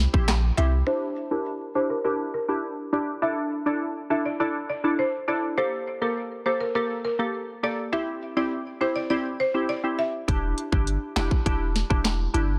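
Dancehall at 102 BPM with a tough, hypnotic mood, opening on a brief hit of deep, pitch-dropping sub bass and an overdriven drum kit with a tight kick, sharp snare and gritty 12-bit sampler crunch, then leaving a glassy, detuned wavetable pluck to pump and warble under a filter sweep while a dry, buzzing hard-mallet marimba carries the delayed melody from 0.6 to 10.1 seconds, before the bass and drums with handclaps and rim clicks slam back in at 10.3 seconds over an Em7 in a dense, heavily limited modern mix.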